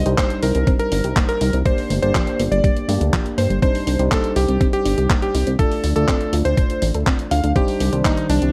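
Danceable and nostalgic, this short italo disco excerpt at 122 BPM in C dorian sets a bright, cutting electric grand piano melody with digital delay over clean tine electric piano stabs, a glossy chorused synth bass, a soft round pluck arpeggio with chorus and delay in the background, a thumpy electronic kick up front and a detuned 8-bit drum machine's handclaps and hi-hat, all moving through Cmadd9, Gm and Dm under light reverb and vinyl crackle.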